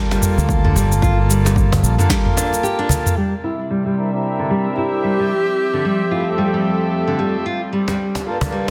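Organic downtempo in G dorian at 112 BPM with a swung 16th feel, meditative and mystical, cut from a longer piece: a fingerpicked nylon-string guitar plays arpeggios up front over a reedy pedal harmonium with sidechain pumping and tape echo, while cajon, a sharp-snared afro-pop kit with cabasa and toms, an overdriven electronic kick and a round fretless bass fill the opening bars. From 3.2 s a filter sweep shades the guitar and harmonium, a dark, gut-string chamber string section holds sustained chords, and a breathy clarinet with vibrato and delay sings a G4 line from 4.8 to 7.1 s before the snappy cajon returns at the close. A lush hall reverb and a dense, heavily limited master frame the piece.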